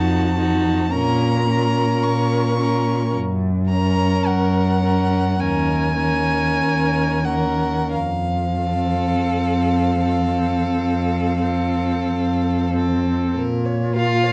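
The cello stands out most: a single bowed instrument carrying the bass line from Eb2 to Bb2, placed up front, expressive, with vibrato and portamento. This is a slow, solemn and melancholic romantic movement for string quartet in Bb minor. It is played with rubato in 4/4 at roughly 42-56 BPM and tuned to A4 = 444 Hz. Above the cello, the first violin sings the melody between Bb4 and Db6 in a smooth, even, close tone with vibrato, while the second violin adds a rich, focused second line. The viola fills in the accompaniment with a similarly focused sound and a smooth top, all four parts playing together throughout the 14.3-second fragment of a longer piece. The harmony moves from F7b9 to Bbm, through Gb, Eb5 and a long F chord, before settling on Bbm at 13.4 seconds, all set in a moderate large-studio reverb within a dark, warm production.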